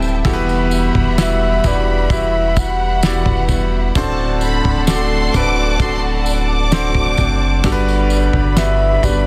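A dense, heavily limited modern mix with light reverb carries this tender, emotional pop ballad excerpt at 65 BPM, where a soft, round octave-layered synth lead with chorus, delay and vibrato sings the melody over bright grand piano, fingerpicked jumbo steel-string acoustic guitar arpeggios, lush bowed string chords, a deep, up-front sine sub bass, a dry, dark 70s drum kit with fat snare and tight kick, and a jingly tambourine in the background, while a close, expressive violin section adds a high second line from 4.0 to 8.1 seconds.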